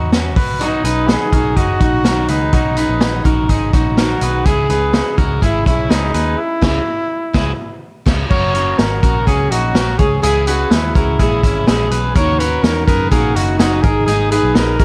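Jangly indie pop at 125 BPM in C# dorian, wistful and bittersweet, this excerpt opens on a twangy, slightly broken-up electric guitar playing arpeggios over a round, foam-muted picked bass and an up-front vintage drum kit with a punchy kick and a rolled-off top. From 0.6 s a smooth-topped trumpet with vibrato carries the melody while a picked steel-string acoustic guitar adds accompaniment, with plate reverb on the trumpet and both guitars. The band hits an accent from 6.4 to 8.3 s before the harmony moves from C#m to F# at 8.3 s, and the production has a dark, warm cast.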